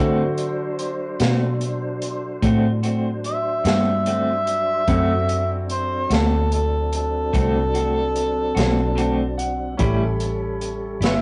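An overdriven, gritty harmonica takes the jazz-inflected solo melody from 3.3 seconds, up front with tongue slaps, scooped notes and a light vibrato, over a soulful, rollicking slow blues in a straight 12/8. Beneath it, a round, foam-muted electric bass and a crunchy breakbeat kit with a punchy kick and a dark, saturated, rolled-off top drive the groove. A clean picked electric guitar with tremolo, a tonewheel organ holding chords through a slow rotary speaker and chorus vibrato, and a brilliant grand piano that adds a fill at 8.6 seconds fill out the D7 to A7 harmony, all in a rough small-room rehearsal sound.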